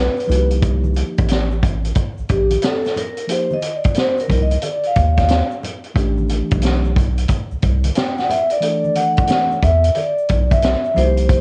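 A vibraphone played with soft mallets carries the solo melody throughout this smoky, mellow jazz-hop excerpt, its ringing, airy tone shimmering with slow motor vibrato and softened by cassette tape. A deep, round dub sub bass sits up front, and from 0.2 seconds a swung vintage drum kit with a punchy kick, high-tuned snare and hi-hat adds 12-bit sampler grit, while a very quiet tube shaker and congas add a bright touch. From 0.3 seconds a clean tine electric piano moves from Cm7 to A9sus4, all set in a small room with light reverb and the dulled top end of a home cassette recording.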